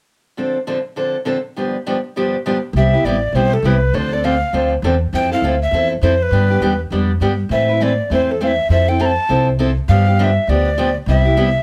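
A light reverb gives this short cut from a longer piece a close, intimate sound, with each instrument sitting up front. It is charming acoustic string swing in the jazz manouche style, moving briskly at 202 BPM in C major with a lilting swing feel. A picked steel-string acoustic guitar starts alone at 0.4 seconds, its boxy, woody tone and old strings carrying a Dm7 to G7 turnaround. At 2.7 seconds a pizzicato upright bass on gut strings arrives with a dark, thumpy sound. A breathy alto recorder takes the melody from 2.8 seconds, bathed in plate reverb, with a soft chiff, gentle vibrato, rolled-off highs and a slightly unsteady tone. The changes travel through Cmaj7, Amadd9, Fmaj7 and G7 before settling back on Cmaj7.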